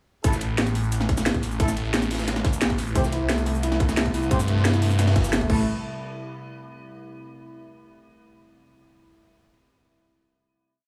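Tense and dark, this short, complete piece of technical drum and bass in A minor runs at 177 BPM in a straight 4/4, launching straight into a drop at 0.2 seconds that holds until a final hit at 5.7 seconds. An overdriven electronic kick sits up front in a broken-beat pattern, joined by a layered, overdriven drum and bass kit with a cracking snare, bright hats, shaker and crash playing tight technical figures, while a crunchy breakbeat kit with a gritty, rolled-off top loops in the background with edits, its hats, snare and room all high-pass filtered. A thick, swirling detuned saw bass with a phaser drives chopped phrases up front, and a brass ensemble adds sparse, echoing power-voiced chord stabs in the background with light vibrato and dub echo. At 3.0 seconds a felt-muted upright piano enters with a soft, intimate three-step arpeggio loop that drifts against the bar, its action noise audible beneath sidechain pumping and dub echo. 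From 3.5 seconds a metallic, inharmonic FM drone warbles eerily in the background with chorus, built-in reverb and sidechain pumping, as the harmony moves from A5 to C and settles on Am before the close, all set in a small room.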